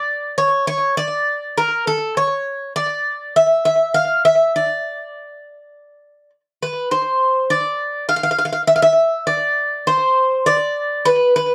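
Greek folk music in a moody, bittersweet vein, this short passage cut from a longer piece moves at 101 BPM in a straight 4/4. A solo Greek bouzouki carries everything from 0.0 to 11.5 seconds, its picked double strings giving a warm, metallic acoustic tone, with some octave-doubled courses among them. The instrument sits up front in a dry, close recording with a 1970s studio character, touched by a slapback echo and a moderate booth ambience. The melody stays within a compact range from A4 to F5. It begins in D harmonic minor, then shifts to D dorian at 6.9 seconds as the second section begins.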